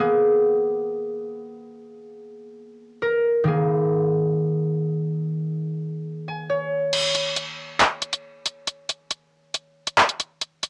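A ringing, fingerpicked concert harp opens this cold, ominous drill excerpt as accompaniment, its cassette-tape tone filtered with a sweep as it moves from G#madd9 to D#sus4 and adds brief fills. At 6.9 seconds, an up-front electronic drum kit enters in a half-time feel with a crash cymbal, handclaps and tape-warmed hi-hats while the kick is muted, and the harp rings on until 8.4 seconds. The excerpt carries the character of a home cassette recording in a small room.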